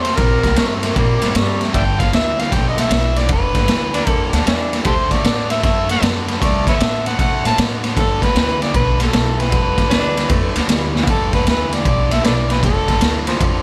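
Laid-back and rollicking, this excerpt of an electric blues shuffle swings at 154 BPM in G mixolydian, with an overdriven, amplified harmonica carrying the melody with light vibrato and tongue slaps over a bright, picked electric guitar riff and a woody, growly pizzicato upright bass. A raw garage drum kit sits up front with a punchy kick, saturated small-room grit and a rolled-off top, and it marks 10.9 seconds with a fill. A raspy, growling tenor saxophone adds a second line from 0.9 to 4.8 seconds and returns at 9.9 seconds, all under a light reverb as the chords move from C7 through G7 and D9 to G9.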